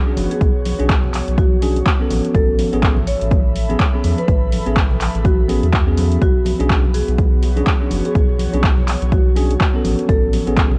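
A dry, cassette-tape sound carries this moody, late-night deep house excerpt at 124 BPM in B dorian, with an overdriven electronic kick, a punchy analog drum machine of handclaps and hi-hat with swung 16ths, distant congas and bongos, a round, deep analog bass and a breathy, detuned pad, both pumping with sidechain, while bell-like tine electric piano stabs through low-pass filter and analog delay sit alongside a marimba melody, also delayed, over chords alternating between Bm69 and Amaj7.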